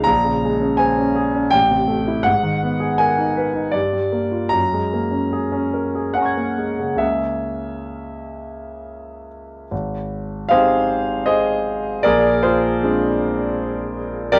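Impressionist classical solo piano in 3/4, drifting with rubato between 66 and 84 BPM in Ab mixolydian, luminous and dreamy in mood, cut from a longer piece. A clear, up-front concert grand with deep bass and long sustain plays alone across its 14.4 seconds, ranging from Ab1 to Ab6 through a sliding chain of chords from Bbm9 down to Gbadd9 and Dbm6, before settling onto Abmaj7 at 9.7 seconds and Bb9 at 12.1 seconds. Light reverb surrounds it, and the whole recording carries the worn, warbling pitch drift of old cassette tape.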